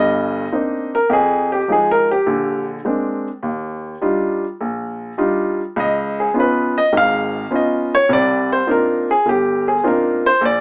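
A warm, natural baby grand piano sits up front and plays alone through this swinging, late-night solo jazz excerpt in C minor at 103 BPM, moving through rich ninth and eleventh chords in a moderate club reverb with a lo-fi AM radio sound.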